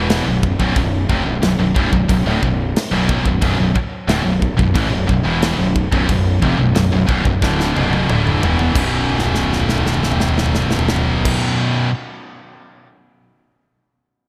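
Bright 1980s-style digital production with light reverb frames this aggressive, dark heavy metal excerpt at 90 BPM in B minor, where a scooped, double-tracked high-gain guitar riff sits up front over a growly, fuzz-overdriven fingered electric bass and a tight-kicked modern studio drum kit in a small room, whose fills from 7.4 seconds lead into a move from Bm to B5 at 8.7 seconds, before guitar and bass stop and the drums continue alone to 12.9 seconds.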